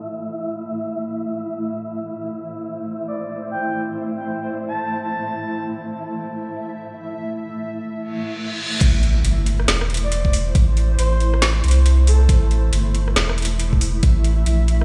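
A swung, half-time 138 BPM pulse in 4/4 drives this brooding, cavernous deep dubstep fragment in A minor, which opens on a blurred granular cloud pad holding an Am chord beneath an airy, wind-like tuned noise texture that stops at 7.1 s, while a breathy flute-like synth lead with chorus, tremolo and dub echo sings short phrases from 3.1 s; then, after a filter sweep and a background reverse cymbal, the drop lands at 8.8 s with an electronic impact, a deep, round dub sub bass and an overdriven, knocking electronic kick up front, plus an overdriven garage kit of woody snare, metallic hats, rim click and crash, the mix set in stone-room reverb under a low-pass filter as if played on a big sound system in a bare room.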